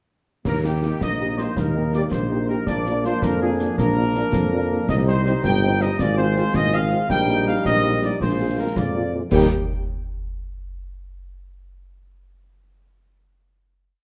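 A steady 6/8 pulse at 108 BPM in dotted quarters drives this short, proud and festive military-style march for wind band in E-flat major, running as a whole piece of about ten seconds. A marching snare rides over a concert bass drum on the beat, with bright clash cymbals adding sparkle, while the mellow tuba sits up front with bass on the beats and sustained bass notes. The trumpet section carries the melody with a light vibrato, sounding both up front and distant in a roomy, classical style. The trombone section holds bright, tight sustained chords, and the mellow French horn section, entering at 0.6 seconds, sits in the background with after-beat chords and sustained chords. The harmony moves from Eb through Bb, Cm, Fm/Ab, Eb/Bb and Bb7 before the band lands on a final Eb chord at 9.3 seconds, all wrapped in a wet large-studio reverb.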